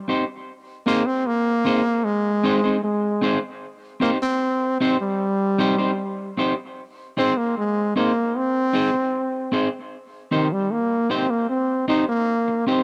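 Hypnotic and meditative, this short reggae fragment sets a brilliant, punchy trombone melody with vibrato up front over clean, picked electric guitar accompaniment, both carrying dub echo in a dry, close 1970s-style studio sound with light reverb, before the trombone steps into a solo from 9.9 seconds.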